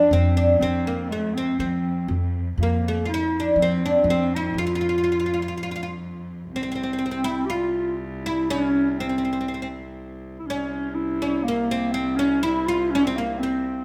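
Arabic maqam ensemble music, soulful and melancholic, in a steady, straight four, taken from a longer piece. A bright, woody fretless oud carries the melody up front, its plectrum-plucked double strings giving a deep, acoustic ring. Beside it, a dark, breathy clarinet plays a second line in a jazz-style subtone, with vibrato, scooped notes and a smooth top. Underneath, a rich bowed cello holds a soft-attacked, expressive drone with vibrato and portamento, while a thumpy pizzicato upright bass on gut strings supports the low end until it drops out at 5.5 seconds for a brief break. The second section opens at 6.5 seconds with oud, clarinet and cello continuing, all set in a moderate recital hall reverb.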